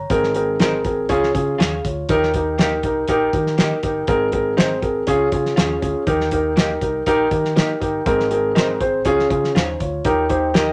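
A dark, woody upright piano sits up front in this warm, danceable slice of uptempo 1960s-style soul, cycling through a repeating Abadd9, Db and Eb progression over a cloth-damped drum kit with a fat snare and tight kick. A foam-muted, round electric bass hums in the background, while an electric guitar through a small old amp adds slightly broken-up, lo-fi stabs from 0.6 seconds. The whole band sits in a moderate studio ambience, in a short cut from a longer piece.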